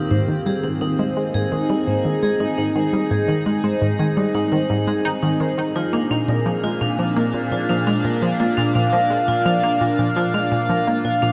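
An up-front analog pluck drives this hypnotic, cosmic piece of ambient, sequencer-driven space music, playing a riff from 0.1 seconds with a round, detuned sawtooth and square-wave tone, a noise layer, a filter sweep, and a fast attack with short decay, thickened by chorus and delay. Alongside it, an equally up-front evolving wavetable pad holds sustained chords from the very start, its morphing unison triangle tone rising slowly and releasing long, colored by chorus, built-in reverb and phaser. A vibraphone struck with hard mallets adds metallic, ringing arpeggios with a medium motor vibrato, sitting slightly lower in the mix with a smooth, shadowed character and a touch of delay. The music moves at 85 BPM in a straight 4/4, shifting from Ab to Bb at 5.8 seconds. Everything is bathed in a huge, wet ambient reverb with a long 8.0-second decay, giving the short excerpt a dark, warm production.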